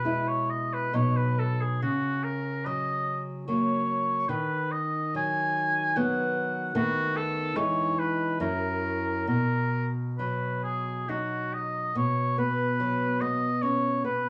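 A clear oboe carries the melody with light vibrato and a soft attack, its classical-style line sitting up front with a vintage character, a cassette tape tint and a touch of plate reverb. Beneath it, a small, fingerpicked nylon-string guitar provides the accompaniment, also up front and colored by the same cassette tape sound. This serene, warm romantic duo moves in 3/4 at roughly 66-76 BPM with a rubato feel, in B major and tuned to A4 = 439 Hz. The harmony passes through E/B, F#/C# and B/D# before a B7/D#, Emaj7 and F#7 lead home to B, and at 12.0 s the music moves into a new section resting on a B5. Recorded at home on cassette in a small booth-like room with modest ambience, the piece has an intimate, homespun quality, and this passage is cut from a longer work.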